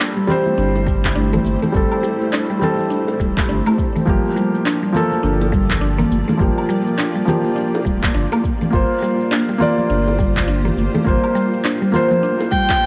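A soft, felt-muted upright piano with audible action noise sits up front in this mystical, earthy organic downtempo piece at 103 BPM in G dorian, washed in shimmer reverb and tape echo and joined by a blurred, evolving granular cloud pad in the background, a woody mallet-like synth pluck playing arpeggios through chorus and phaser, a round sine sub bass, a deep electronic kick, electronic handclaps, shaker and woodblock, and background congas and bongos, before a clear, bowed kamancheh with vibrato enters at 12.5 seconds.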